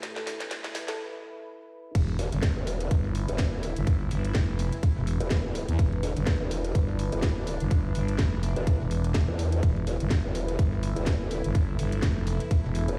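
Bouncy, swaggering bass house at 125 BPM in E minor with a 16th-note swing, cut from a longer piece, opens with a filter-swept build-up where a garage kit's cracking snare and crash join a bright, resonant sawtooth pad, a deep, moody ambient pad and a brief woody, buzzing kalimba line with delay, before the drop at 2.0 seconds brings a tight, up-front electronic kick, a very quiet gritty sampler-style kit, a thick FM bass and an aggressive, wobbling, saturated growl bass, the two basses pumping under a stone-room reverb.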